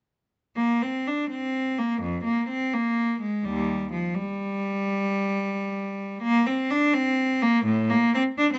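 Classical and baroque in style, this short passage from a suite movement for unaccompanied cello has a radiant, dance-like mood. It moves at 84 BPM counted in dotted quarters, in 12/8 shaped with flexible rubato. A single bowed cello plays alone from 0.6 to 8.6 seconds, ranging from Eb2 up to D4. Its period-style gut strings give a rich, reedy tone, and it sits close and up front. Light reverb surrounds the instrument, and the sound is rounded at the top, reaching only to 7.9 kHz. The recording is cut from a longer piece.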